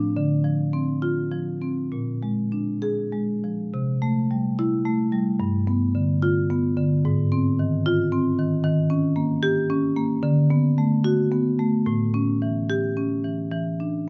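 A contemporary classical piece for solo marimba, heard here as a 14.1-second excerpt cut from a longer work, moves with a flowing, playful character in a rubato 6/8 at roughly 65-77 BPM, counted in dotted quarters. The marimba, struck with medium mallets, sits up front with a warm tone and ranges from G2 to Ab4, tuned slightly high at A4 = 441 Hz. A brief opening section gives way at 3.7 seconds to a longer second section, where the harmony travels through colorful, shifting chords such as C6, G7, Ab6, Eb7 and D6 before settling on an open E7 with the third omitted. Close, detailed microphones capture the instrument, framed by a light touch of reverb.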